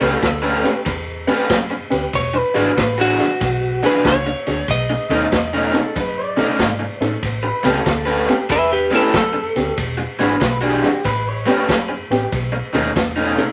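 Electric blues shuffle at 94 BPM with a rollicking, soulful swing, built on a raw, overdriven garage guitar riff, a jangly, detuned honky-tonk upright piano, round foam-muted fingered bass and a punchy vintage drum kit with dark cymbals, while a dark, slightly broken-up lead guitar carries the melody until 9.8 seconds and a bright, twangy second guitar line appears from 5.8 to 11.9 seconds, all over A9, E9 and B9 chords in a moderate club reverb.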